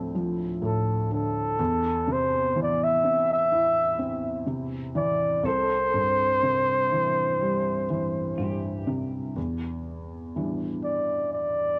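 A heartfelt acoustic folk-pop ballad at 62 BPM opens with a breathy, mellow flugelhorn singing a tender, jazz-style melody up front with light vibrato and scooped notes over a soft, felt-muted upright piano whose action noise is audible, while a slightly broken-up, twangy electric guitar plays tremolo arpeggios in the background until 9.8 s, the harmony moving from Dm7 to Em7 and the horn and guitar bathed in plate reverb within an intimate small room, the whole home-recorded onto vintage cassette.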